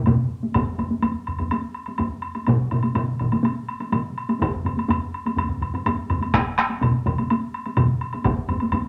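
Layers of taiko drums and a woody woodblock open together at 0.1 s in this driving, powerful excerpt of Japanese traditional taiko ensemble music in a straight 4/4 feel. One group of drums is struck with hard sticks and sits up front in a small room, while others use heavy sticks, two of them compressed and saturated with one of those also up front. A fourth taiko group with heavy sticks joins at 0.6 s, and the whole excerpt sits in a short, wet club reverb.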